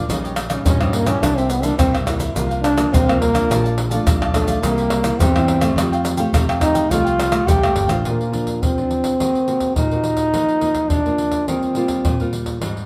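A straight 4/4 samba-and-choro groove at 106 BPM in Bb major comes from a tight surdo, pandeiro, tamborim and tube shaker, sitting up front with a small-room acoustic sound. A thumb-plucked nylon-string guitar, a crisp, bright picked cavaquinho in the background and a punchy fingered electric bass carry chords such as Eb7/Bb, C7 and Bbmaj7, while from 0.7 seconds a warm trombone takes a jazz-style solo with a soft attack, a smooth top and light vibrato. The mood is festive and sunny, with the band playing live in one room inside a wet large-studio reverb, and at 8.0 seconds the cavaquinho and bass drop out, leaving guitar, percussion and trombone over Bbadd9, Ebm6 and Ebadd9 in this cut from a longer piece.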